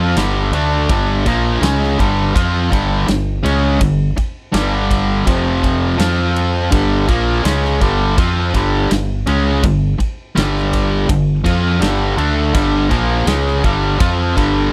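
A straight 4/4 groove drives this swaggering blues rock power trio excerpt with a southern rock edge: a distorted, double-tracked electric guitar sits up front playing a riff over G5, F5 and back to G5, a growling fingered bass with overdrive pushes underneath, and a huge arena drum kit with punchy kick, medium-tuned snare, ride and bright cymbals rings in a natural big room, the trio captured in a dry, close 1970s-style studio sound.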